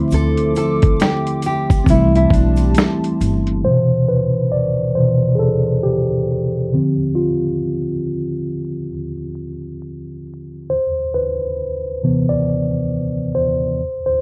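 A dark, cosy haze of vinyl crackle and small-room ambience wraps this dreamy lo-fi hip hop fragment in C major, cut from a longer piece and moving at 68 BPM with a swung sixteenth-note feel. For the first 3.6 seconds the full band plays. A gritty, overdriven sampler-style drum kit with a thumpy kick sits up front, a woody pizzicato upright bass on gut strings holds the low end, and a moody, detuned analog pad adds chorused, sustained chords. A full-bodied, fingerpicked nylon-string guitar carries a short melody until 2.7 seconds, finger squeak audible, while a grainy tube shaker stays distant in the background. From 3.6 seconds the worn, slightly out-of-tune tine electric piano, which has been comping from the start through a cassette-tape tone, takes over alone as a solo that runs to 14.2 seconds. Its mellow voice drifts over chords moving from Cmaj7 to Dm7 and back.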